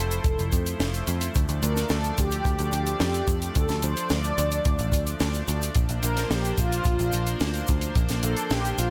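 A straight 4/4 groove at 109 BPM carries this short, uplifting and dreamy synthwave clip, taken from a longer piece and moving from Fmaj7 to Dm at 1.4 seconds and on to Bbadd9 at 5.8 seconds. A dry, tight acoustic kick sits alongside a compact funk kit of hi-hat, shaker and high-tuned snare, both set in a small room reverb. Up front, a picked electric bass with a dark, round, foam-muted tone and tube saturation anchors the low end between F1 and F2. Behind it, a shimmering, retro pulse-width pad built from detuned sawtooth, triangle and sub-octave layers with ring modulation holds slow-attack chords that pump through sidechain compression. On top, a mellow, brassy synth lead with a filter sweep, vibrato, chorus and digital delay sings the melody between F4 and D5, all inside a light small-room ambience.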